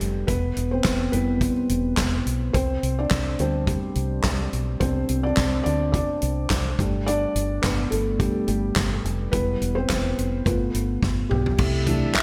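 A bright, 1980s-style digital production with a lush hall reverb frames this hopeful piano-driven pop excerpt at 106 BPM with a light 16th-note swing in C major, where a mellow, felt-muted upright piano with audible action noise and a lush chorus takes the lead up front over a dark, round dub bass and a punchy acoustic country drum kit with gated reverb and handclaps, moving from Em through suspended chords to G7 before a drum fill at 11.0 s, a smooth tonewheel organ with slow rotary speaker settling onto C6 at 11.6 s, and a crisp group handclap landing at 12.2 s.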